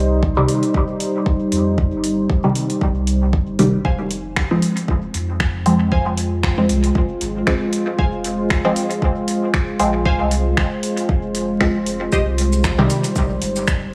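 A dark, detuned ambient pad and a round, sine-like sub bass open this hazy dub techno excerpt together, both breathing with sidechain pumping. The pad sits up front, its slow-attack chords thickened by chorus and its own reverb. A tape-warm electronic kick lands almost immediately at a steady 116 BPM in F minor, with a lightly swung 16th-note feel. It is joined by a deep house kit of finger snaps, shaker and metallic hats, set in studio ambience with touches of dub echo. A muted, sawtooth-and-square chord stab plucks through phaser and echo while a filter sweep runs across it. At 3.8 s a crisp, digital wavetable stab enters higher up, quieter and bathed in echo and pumping, as the harmony moves from C minor to F minor and back to C minor near the close. A lush hall reverb and a bed of vinyl crackle wrap the whole fragment in a deep, dusty haze.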